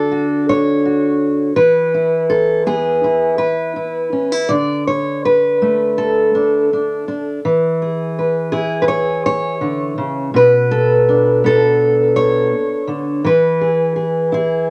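A fingerpicked steel-string acoustic guitar plays alone and sits up front, its fresh strings ringing with an auditorium-sized body and an audible finger squeak. This nostalgic, peaceful folk passage moves at an unhurried 82 BPM in a straight 4/4, tuned to A4 = 436 Hz. Over about 14.7 seconds cut from a longer piece, it drifts through Dmaj7, E, D5 and Bm in a moderate studio reverb.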